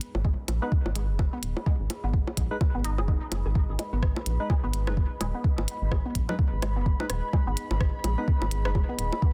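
Clinical and quirky, this brief stretch of swung minimal techno rides a soft, up-front electronic kick and clicky, tape-warm hi-hats, with overdriven electronic bongos, rim click and congas trailing dub echo. A rubbery, hollow square bass pumps against the kick while a squelchy, phased blip pluck riff and percussive organ-like stabs with lush chorus and dub echo dart across a single G# minor chord. Beneath it all a deep, warbling vintage pad breathes with chorus and its own reverb, in a dense, heavily limited mix that otherwise stays dry.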